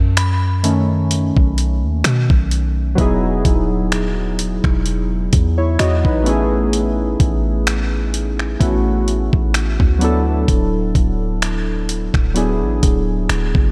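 Detuned analog keys, round and chorused with a filter sweep, carry a solo passage through the first 3.0 seconds of this smooth, romantic contemporary R&B excerpt in E major at 64 BPM, with a lightly swung 16th-note feel. A boomy 808-style sine bass with a noise layer and a gritty, compressed sampler-style kit of finger snaps, hi-hat and thumpy kick sit up front, while a crystalline FM bell with chorus, phaser and delay glints in the background until 1.3 seconds. Under a light reverb, the harmony moves from B7 to Emaj7, Amaj9 and D6.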